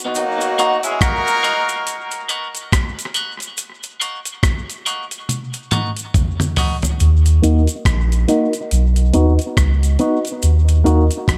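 Deep and meditative, this echo-heavy dub reggae excerpt opens on a break, with an up-front horn section in octave doubling playing a brief second line until 2.3 seconds. Beneath it sit gritty, compressed breakbeat drums with a thumpy kick, a twangy, scooped clean electric guitar and a band-limited vintage cabasa in the background, each trailing tape echo. After a drum fill and a filter sweep, a round, soft sub bass arrives up front at 7.0 seconds as another sweep begins, and a reedy electric piano soon adds mellow stabs through fast tremolo.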